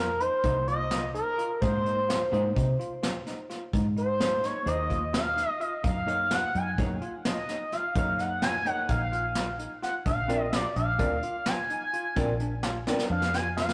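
A nasal, smooth sawtooth synth lead with chorus, tape echo and vibrato plays an expressive solo up front through this driving, intricate progressive instrumental excerpt in 9/8, over bell-like electric piano arpeggios, a round, foam-muted fingered bass, a dark hollow-body jazz guitar entering at 0.4 s, and soft brushed drums with a punchy kick that close on a fill at 12.9 s, heard in a rough rehearsal-room sound with tube saturation and stone room reverb.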